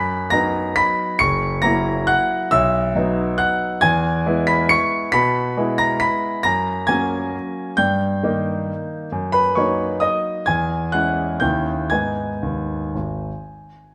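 A classical piano waltz in G# minor, this short excerpt carries a nostalgic, bittersweet mood, moving in a flexible, rubato three-beat pulse that drifts between 114 and 145 BPM. A concert grand plays alone throughout its 13.9 seconds, its tone warm and natural, with deep bass anchoring a span from low F#1 up to high treble notes around C#7. The harmony opens in the relative major, passing through B, F#7 and E, before a turn toward minor colours leads through a D#7b9 to settle on G#m at 11.9 seconds. The piano sits up front, captured by close, detailed microphones that reveal every nuance of the touch. A moderate recital-hall reverb gives the instrument a sense of space, framing the intimate playing with a gentle, lingering tail.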